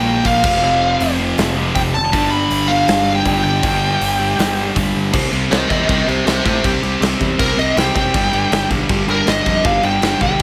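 Lightly reverberant and rowdy, this rebellious punk rock excerpt at 160 BPM opens in a half-time feel over F5 and G5 chords. A big-room acoustic kit with a punchy kick and bright cymbals drives it, alongside a growling, overdriven picked bass and a background wall of rhythm guitars: one sludgy and dark, one overdriven, and a thick, double-tracked fuzz guitar that drops out at 5.1 seconds. At that point the dark, smooth overdriven lead guitar, already up front with its melody, takes a solo over C5 and G5.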